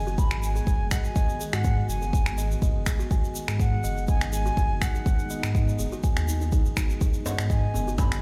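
The recording sounds as if it is played over a big sound system in a bare stone room, with a small-room reverb lending the whole mix a hard, reflective ambience. This short afro house cut moves at 123 BPM in 4/4 with a light swing on the sixteenths, sitting on a single G#m7 chord in G# minor for a driving, warm mood. A deep, tape-warm electronic kick sits up front with a round sine sub bass, while layered electronic finger snaps and a grainy, bright tube shaker fill the groove. Over this, a buzzing, woody kalimba plays soft fingertip arpeggios through tape echo, and an ethereal, detuned pad holds sustained chords with slow attack, ensemble chorus and its own reverb, both pumping with sidechain alongside the bass. A mellow, airy concert flute carries the melody with expressive vibrato and tape echo. Near the close, at 7.3 seconds, a deep acoustic djembe joins the percussion.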